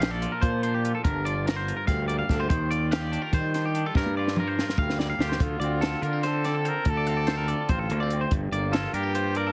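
Math rock and midwest emo in an intricate, wistful 7/8, where one twangy, clean electric guitar picks bright arpeggios with slapback echo over a second, softer guitar sitting in the background with spring reverb, all above chords like Bbmaj9, Ebmaj9 and Gm7. Up front, a punchy fuzz-overdriven fingered bass sits alongside a compact cocktail drum kit that sounds dark and smooth, with a high-tuned snare and tight kick, and the kit plays a fill from 3.9 to 5.4 seconds. At 5.2 seconds a warm, distant trumpet enters with the melody, its scooped notes and light vibrato carrying slapback echo, and the whole cut has a dry, heavily compressed radio sound.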